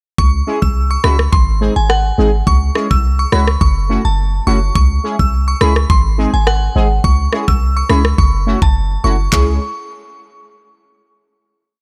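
In a digital ambience, this short, complete dancehall piece at 105 BPM in C# harmonic minor feels sultry and hypnotic: a sparse, electronic drum kit with a knocking kick, handclaps and rim clicks sits under a deep, boomy 808-style bass playing syncopated low lines up front, while punchy, detuned sawtooth brass stabs enter at 0.5 s with close-voiced off-beat chords and sidechain pumping, and a glassy, crystalline FM bell carries a syncopated hook through chorus and delay over a C#m, G# and F#m7 cycle before settling on a final C#m chord at 9.3 s.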